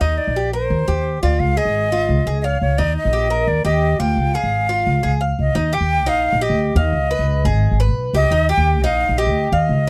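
A breathy silver concert flute carries the melody up front, its close-miked, tongued phrasing colored by vibrato and a slightly unsteady quality that gives it a human, intimate edge. Beneath it, a Cuban tres picks out arpeggios on its paired, partly octave-doubled strings, lending a warm, metallic tone to this sunny Cuban son and guajira cut. An upright bass with gut strings anchors the low end in pizzicato, its woody, thumpy tone sitting dark and close in the mix. The chords sway between Ebmaj7 and Db-based colors, with the second passage beginning at 5.6 seconds and bringing a Db7sus2 before resolving back to Ebmaj7. The dry, close sound, with little reverb, recalls a 1970s studio and keeps this brief, warm excerpt feeling immediate.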